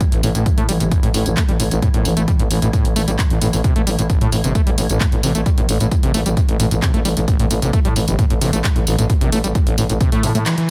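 A squelchy, gritty acid bass riff with sidechain pumping and digital delay opens this intense, industrial stretch of driving peak-time techno, over a heavy layered kick, a techno kit of handclaps, hi-hat and tambourine pumping in a large room, and a very quiet, dark swarming drone. A thick, growling FM bass sits up front beneath the riff, pumping along with it. The heavily compressed, radio-like mix carries light reverb, and a band accent lands at 10.5 seconds.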